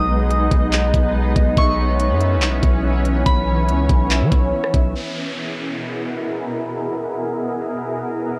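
A hazy, lightly reverberant home-cassette sound wraps this short cut from a floating, blissful cloud-rap track, moving in half-time at 142 BPM and tuned slightly below standard pitch. A shimmering, ethereal ambient pad carries sustained chords throughout, detuned and granular with an octave-up glow, softened by chorus, reverb and a low-pass filter, and pumping gently against the beat. A soft, pure FM synth bell sings a high, warbling melody through tape echo, chorus and phaser, while a fingerpicked Celtic harp rings out arpeggios in the background. A deep, mellow 808-style bass holds long sine tones under an up-front trap kit of knocking kick, crisp hats, handclaps and rim clicks. At 5.0 seconds the drums, bass and bell have dropped away, an electronic downlifter slides in, and the pad's filter sweeps as the harmony settles from G#m and C#m7 onto E over a steady B.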